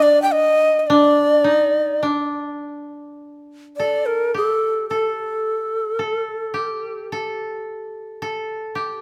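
Unhurried and rubato at about 53 BPM in 2/4, with uneven beats, this short excerpt of austere, calm Japanese chamber music sits in D miyako bushi. An up-front bamboo shakuhachi carries the melody with a breathy, reedy tone, vibrato and a tongued chiff until 7.1 seconds, while a koto plucked with fingerpicks supplies a woody, dry second line beneath it and carries on alone to 9.0 seconds. Close, detailed microphones and light reverb keep both instruments intimate and present.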